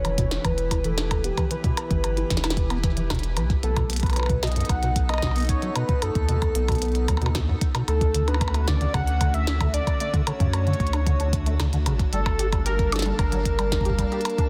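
A dense, heavily limited modern mix with light reverb frames this cerebral, glitchy IDM cut at 113 BPM in E dorian, moving through Em, B7, Dmaj7 and Gmadd9 in a straight 4/4. A velvety, chorused synth lead with vibrato and digital delay carries the melody over an icy, crystalline pad that pumps to the sidechain and carries vintage 12-bit sampler grit. Beneath them, a rubbery, resonant acid bass plays arpeggios with tape echo, a round sine sub bass holds the low end, and a clicky kit with a tiny soft-clipped snare and percussion blips is joined by a soft electronic kick from 0.2 seconds.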